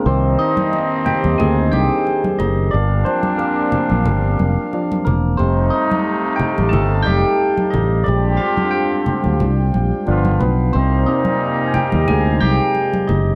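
A barky tine electric piano carries a solo from 0.1 s to the end of this brief cut from a longer 1970s-style soul piece, its bright, clean tone coloured by a phaser and pushed up front through a combo amp. The mood is cinematic and smooth, set at 90 BPM in 4/4 with a light swing on the 16ths, in C minor over a Cm9, Gm7, F9, Bb13 and G7 progression that returns to Cm9. A fingered electric bass sits prominently in the mix with a direct, amped sound. A mellow woodwind section holds sustained chords in the background with a light vibrato, while a muted trombone section adds nasal, vintage-flavoured stabs. Ringing, medium-tuned congas join at 0.6 s, and the whole piece has the dry, close feel of a 1970s studio recording.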